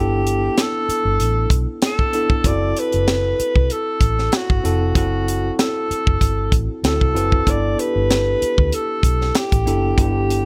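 Lush 1970s-style soul with a smooth, unhurried swing, heard in a short cut from a longer piece. A breathy alto saxophone carries the melody up front with light vibrato and a roomy, distant air, moving over a worn tine electric piano that sounds slightly out of tune and lightly overdriven through its built-in speakers. Underneath, a vintage fingered electric bass gives a dark, round, foam-muted punch, while a dry, tight funk kit enters at 0.3 seconds with a high-tuned snare, hi-hat and compact kick sitting prominently in the mix. The harmony drifts between rich sixth-ninth and minor-ninth colours before a dominant seventh turns back home. Near the end, from 7.8 to 9.4 seconds, a very quiet vibraphone adds a single metallic, ringing note with its motor off, boxy and warm in a small room.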